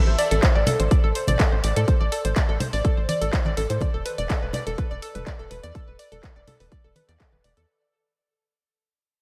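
Dreamy yet driving, this short progressive house excerpt at 124 BPM in a straight 4/4 pairs a round, detuned analog pluck playing arpeggios between A4 and D5, with chorus, sidechain pumping and a diffuse ambient delay, against a tight sawtooth sequencer bass spanning E1 to A2 that pumps beneath a punchy, up-front electronic kick, a deep house kit of handclaps and dark hi-hats, and acoustic congas, all moving from A minor to E5 at 3.8 seconds under light reverb while the whole cut fades out.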